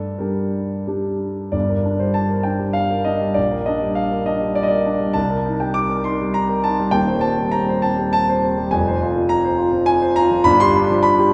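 A concert grand piano with a deep bass, open tone and long sustain sits up front in this stormy, brooding romantic character piece for solo piano, played in G minor in 3/4 with a rubato feel that moves between 87 and 106 BPM. Heard in a short cut from a longer work, the harmony passes from G minor through C minor colours to F minor before settling on a bare G chord at 10.5 seconds. A wet concert hall reverb with a 2.5-second decay surrounds the instrument, giving it the spacious air of a church or concert hall.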